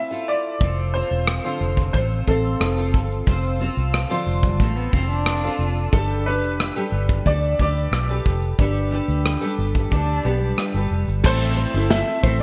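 Reflective and tender, this excerpt of acoustic pop moves at 90 BPM in a straight 4/4, with a slightly detuned, woody upright piano carrying the melody through lush chorus and delay over double-tracked picked steel-string acoustic guitar, joined at 0.6 seconds by a round, foam-muted vintage electric bass and a modern studio drum kit with bright cymbals, tight kick, rim click, shaker and snare, all treated with gated reverb. A dark, bowed cello with vibrato adds a second line in two brief passages, and at 11.2 seconds a full-bodied nylon-string guitar enters with fingerpicked arpeggios, finger squeak audible, as the harmony moves from Fmaj7, Dm7 and Gadd9 to Am. The sound is a bright 1980s-style digital production set in light reverb and small room ambience.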